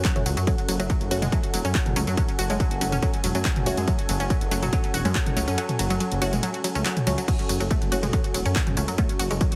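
Driving, intense peak-time techno at 141 BPM in F# minor, this excerpt rides a single F#m chord as a heavy, tape-warm kick sits up front (dropping out from 5.6 to 7.3 seconds) beneath an overdriven analog drum machine of claps, hats, ride, crash, tambourine and toms, a thick, menacing detuned saw bass, a bright, warbling unison pluck riff with tape echo, a nasal, phased dub chord stab with tape echo in the background, and a deep, moody ambient pad with chorus, everything but the kick pumping with sidechain compression inside a heavily compressed, radio-like sound with light reverb.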